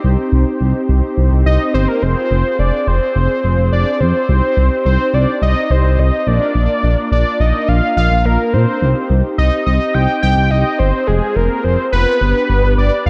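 A smooth, dark synth bass sits up front with gliding portamento and sustained sawtooth-and-square tones, driving this melancholic synth-pop excerpt, which is cut from a longer piece, while mellow, round synth brass with chorus and a filter sweep holds the accompaniment underneath from the very start. At 1.5 seconds a fat, detuned analog lead with a sub octave, vibrato and analog delay takes the melody. A lush hall reverb soaks the mix in a dreamy haze as the chords move from Cm through Fm and Bb to a closing G.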